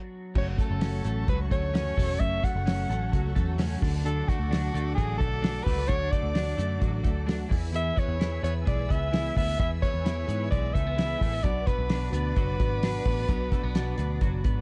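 A clear soprano saxophone carries the melody through this restless, wistful slice of jangly indie pop, its vintage tone shaded with vibrato and trailed by delay. The piece moves at 130 BPM in a straight 4/4 in F# minor, cycling through F#m, D, E and Bm. A bright, twangy twelve-string electric guitar opens alone with compressed arpeggios swirled in analog chorus, joined at 0.3 seconds by a fingerpicked, full-bodied jumbo acoustic guitar and a lush bowed string section holding sustained chords in the background. From 0.4 seconds a round, foam-muted electric bass and a cloth-damped drum kit settle in, the kit up front with a fat snare, tight kick, dark cymbals and a rolled-off top. The production is dark and dry, with little reverb, and the passage is cut from a longer piece.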